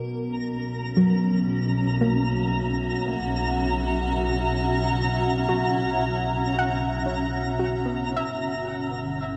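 A soft, round pluck plays dark, chorused arpeggios through a diffuse delay from 1.0 seconds, drifting over a blurred, up-front granular cloud pad holding sustained chords, a bowed, vibrato-laden double bass section set distant, a chorused analog drone in the background and a sparkling granular shimmer, all in free time in a vast, echoing cathedral space, a spacious, melancholic ambient passage cut from a longer piece that moves from Bsus2 to Gm and fades out from 5.5 seconds.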